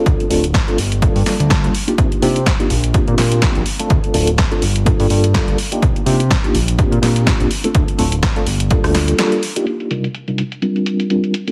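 Swung 16ths drive this funky, nostalgic filtered disco house excerpt at 125 BPM in G minor, with a punchy analog kick re-recorded in a large room and a layered house kit of filtered snare, rim click and bright, pumping hi-hats. A fat, saturated sawtooth bass pumps beneath a low-pass filter, while an up-front, reedy, clean electric piano with fast tremolo, phaser and sidechain pumping cycles through Dm7, Gm9, Cm11 and Bb6, all under light reverb and a heavily compressed radio sound. The kick stops at 8.8 seconds and the bass at 9.1, leaving the kit and piano, which takes a filter sweep from 9.7 seconds.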